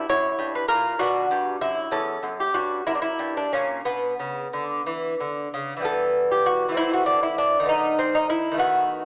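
A solo lute, fingerpicked with a bright, delicate tone from its doubled strings, sits up front in this brief, introspective and solemn baroque-style dance in 6/8, moving with rubato at around 58-68 BPM in B minor before turning to E minor at 5.9 s, heard in a moderate recital-hall reverb through a small-speaker sound as a cut from a longer piece.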